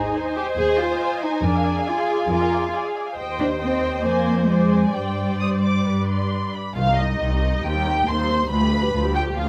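Wrapped in moderate studio reverb, this restless, dramatic excerpt from a quick classical-period movement for string orchestra sets con sordino violins singing a dark melody above a second violin line, distant, lush violas in accompaniment, close cellos with light vibrato, and rich, soft-attacked double basses up front, all flowing with a rubato feel.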